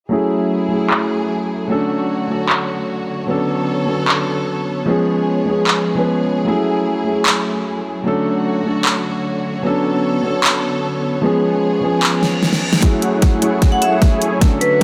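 Emotional and bittersweet, this future bass excerpt moves at 151 BPM in a half-time feel in F# minor, cycling through lush ninth and seventh chords. A warm, vintage grand piano sits up front with long sustain, its accompaniment shaped by sidechain pumping, a low-pass filter and delay, while a rich, biting studio string section holds sustained bowed chords with vibrato. From 0.9 s a big-room dance kit of handclaps, hi-hat and a huge layered snare joins, with both snare and hats low-pass filtered. Around 12.2 s a reverse cymbal and riser rise in the background alongside a drum fill, and at 12.8 s the music shifts into a build-up where an overdriven, hard-clipped electronic kick punches in and huge detuned sawtooth supersaw chords with a moving notch pump through a low-pass filter. Near the close a bright, metallic vibraphone with medium hard mallets rings out a short melody, close-miked and dry, with sidechain pumping and delay, all set in a lush hall reverb.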